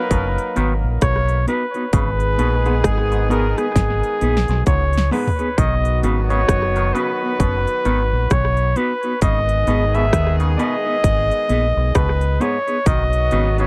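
Warm and laid-back, this roots reggae piece at 66 BPM in B major sets an up-front flugelhorn melody with light vibrato, scooped notes and tape echo over a distant, roomy horn section, a dark, round dub bass, a punchy, overdriven electronic drum kit with slapback echo and a fill at 3.8 seconds, a clean, fingered electric guitar with tremolo entering at 0.6 seconds, and a twangy, nasal clav arpeggiating in the background, as the harmony moves between B and G#m in a dry, close 1970s-style studio sound.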